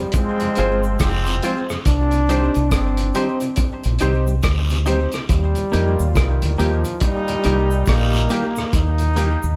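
A slow, swung 70 BPM groove in 4/4 sets up this sunny roots reggae excerpt in Eb major, driven by a cloth-damped, thuddy drum kit with a tight kick, hi-hat and rim click, and a deep, round, punchy fingered dub bass sitting up front from 0.6 seconds. A clear, punchy solo trombone with vibrato and tape echo carries the melody from the start, joined by a present trombone section on a second line, while a mellow, lightly overdriven tonewheel organ with rotary speaker hums very quietly underneath over Fm, Cm and Eb. In the background, a clean semi-hollow guitar with tape echo and a brilliant, woody upright piano playing stabs fill out the band, with cabasa and guiro adding small-room texture to this live, lightly reverberant room sound.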